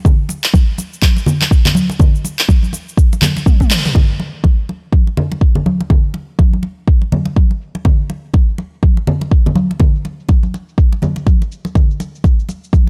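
A deep, up-front electronic kick, close and dry thick-skinned congas struck with hard hands, and a layered deep house kit of cabasa, handclaps, toms and crash with filtered percussion all start together in this hypnotic, driving swung house excerpt, where a drum fill from 3.5 seconds and a band accent at 3.7 seconds lead into a filter sweep on the drums from 4.0 seconds in a gritty recording with little reverb.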